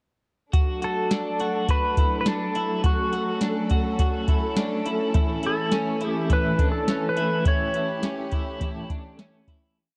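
An overdriven vintage rhythm box sits up front in this dreamy, ethereal dream pop piece, its deep kick, tonal snare and metallic hats marking a simple, spacious backbeat. Above it, a lap steel guitar carries the melody in song-like motifs, fingered with a slide and shaped by volume swells, its twangy tone trailing a digital delay. A clean electric guitar picks a compressed arpeggio ostinato coloured by lush chorus and delay, while a rich studio string section holds smooth, bowed chords with light vibrato beneath. At 5.1 seconds a bright twelve-string electric guitar joins in the background, strumming eighths in open chord shapes through tremolo and subtle chorus as the harmony moves from D to A. A moderate hall reverb and dark, warm production envelop the single verse, which fades out from 7.5 seconds to its close at 9.8 seconds.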